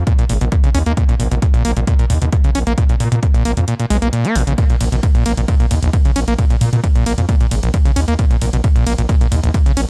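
Driving peak-time techno in a straight 4/4 at 133 BPM, this industrial excerpt from a longer piece sits in Bb phrygian, with a punchy, tape-warm electronic kick up front that drops out between 3.7 and 4.6 seconds while an analog drum machine's hi-hats and ride cymbal pump under sidechain. A growling, thick FM bass with a sine core holds sustained low notes, also pumping, as an overdriven acid bass plays a squelchy, resonant sawtooth riff with a plucked filter snap, distortion and tape echo. The sound is dry and gritty, like a hardware recording with little reverb.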